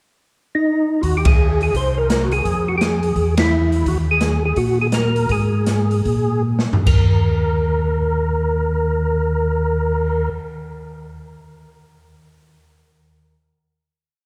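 Swinging in 4/4 at 144-170 BPM, this short, bluesy, greasy soul jazz organ trio piece opens with a percussive tonewheel organ melody at 0.5 seconds, round and clean with third harmonic percussion, chorus vibrato and a slow rotary speaker, playing motif-based call phrases, joined at 1.0 seconds by a mellow tonewheel organ bass in a two-feel and an acoustic jazz drum kit with dark cymbals, a boomy kick and time on the hi-hat, through band accents, a slowing down from 3.9 to 6.9 seconds and a drum fill into a long final Eb5 chord, all bathed in the moderate reverb of a church.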